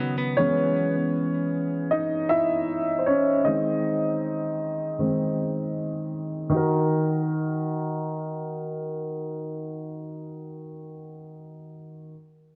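In a straight, unhurried 4/4, this sensual, late-night R&B fragment, cut from a longer piece, opens with a brief figure of clean, picked, compressed electric guitar arpeggios, recorded direct with tape echo and a low-pass filter, that ends by 1.0 seconds, while an up-front, mellow grand piano with long sustain, also low-pass filtered, carries a solo under a filter sweep until 6.5 seconds before settling onto an Ebm chord as the next section begins, all bathed in a lush hall reverb.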